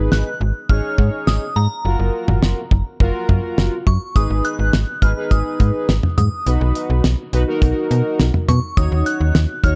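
A dark, warm production with a small room's light reverb frames this nocturnal, melancholic synth-pop passage at 104 BPM in a straight 4/4, moving through Abm, Gbmaj7, B and Ebm7. Up front, a damped 70s drum kit with a fat snare and tight kick sits beside a snappy, metallic FM bass. Detuned sawtooth synth brass with a sub octave, vibrato and a filter sweep carries the accompaniment, while a crystalline, warbling synth bell sings the melody high above through chorus, tremolo and tape echo, the brass dropping away at 9.7 seconds as the cut ends.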